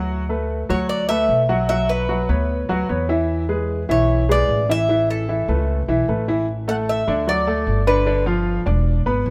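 A picked Cuban tres carries the melody from 0.7 to 8.2 seconds, its double strings ringing with a metallic edge and some octave-doubled brightness, set up front in the mix. Alongside it, a clear grand piano plays arpeggios with an intimate, present tone, long sustain and audible action noise. An upright bass on gut strings holds the low end with a woody, dark, thumpy pizzicato sound. This danceable, relaxed Cuban son and guajira fragment, cut from a longer piece, moves through chords such as Bmadd9, E7 and Aadd9 before shifting at 6.5 seconds into a new passage built on A5, D and G5. Light reverb gives the three up-front instruments a touch of space.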